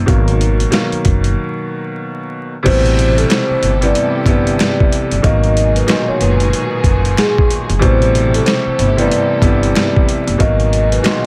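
A clear, woody upright piano sits up front in this gritty, reflective boom-bap hip-hop excerpt, its vintage tone softened by cassette tape and filtering as it comps over a slow 93 BPM groove in 4/4 with a lazy 16th-note swing. A compressed, pitched-down sampler-style kit with a thumpy kick, high-tuned snare, hi-hat and crash cymbal sits up front alongside a growly, pizzicato upright bass on steel strings, and the harmony rocks between G#m7 and Am7. Near the end of a break from 1.4 to 2.7 seconds, a mellow vibraphone played with soft mallets enters at 2.6 seconds, its metallic ringing tone shimmering with slow motor vibrato and tape echo. At the same moment a lush, bowed studio string section settles into sustained chords in the background, and a very quiet finger snap in a small room joins at 3.3 seconds. Vinyl crackle and light reverb give the whole track a dusty, late-night atmosphere.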